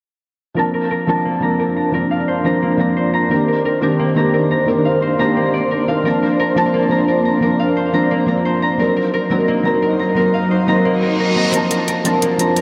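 Lush and dreamy, this cut from a longer liquid drum and bass piece opens on a dark, felt-muted upright piano with audible action noise carrying the accompaniment, joined by ringing, fingerpicked concert harp arpeggios up front and an ethereal, detuned ambient pad holding sustained chords under a filter sweep, in a mix soaked in huge reverb, until a reverse cymbal at 11.0 s ushers in bright electronic hi-hats at 11.5 s.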